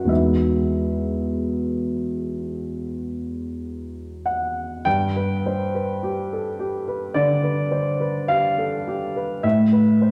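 A clear baby grand piano carries this short, serene impressionist classical fragment alone, its open, long-sustaining tone spanning E2 to G5 and sitting up front even though the listener seems placed further back in a reverberant scoring stage with a 2.1-second tail. At a slow, rubato 51 BPM in 4/4, it drifts dreamily from an Emaj9 in E major to a Gadd9 at 4.9 seconds, where the harmony turns G mixolydian, and touches an Amadd9 at 9.4 seconds. The clip is cut from a longer piece, and the tuning sits slightly low at A4 = 436 Hz.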